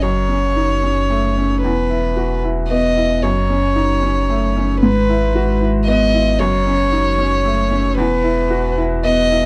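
Reflective and fragile, this short excerpt of neoclassical piano and strings moves in a rubato triple metre, cut from a longer piece. A warm, intimate violin carries the melody up front, its soft attack, airy bow and light vibrato lending a hushed sul tasto quality, with plate reverb around the single player. Beneath it, a bright upright piano plays the accompaniment, its woody, worn tone slightly detuned and up front. A pure sine sub bass adds a deep, clean, sustained foundation. The harmony circles between F#m and E chords, including an E/G# at 4.8 seconds, and all three parts play throughout the 9.5 seconds. The production is dark overall with a light reverb.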